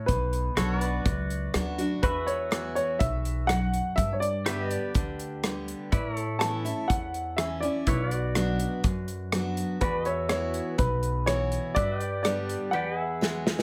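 Heard through a moderate studio reverb, this short honky-tonk and classic country passage, cut from a longer piece, feels easygoing and heartfelt on a straight 4/4 groove. A warm, slightly detuned upright piano carries the melody with a short, present sustain, while a picked dreadnought acoustic guitar fills in bright, full-bodied accompaniment marked by audible finger squeak. A clean, compressed pedal steel guitar played with fingerpicks lays sustained slide chords with volume swells, and a thumpy pizzicato upright bass with steel strings and a woody, bright tone anchors the low end until about 12.5 seconds. The natural country drum kit sits up front in a small room, with a punchy kick, a medium-tuned snare, rim clicks and hi-hat, closing with a fill at 13.2 seconds. The harmony cycles through Bm, Esus2, G and Aadd9 before turning to Eadd9 at the very end.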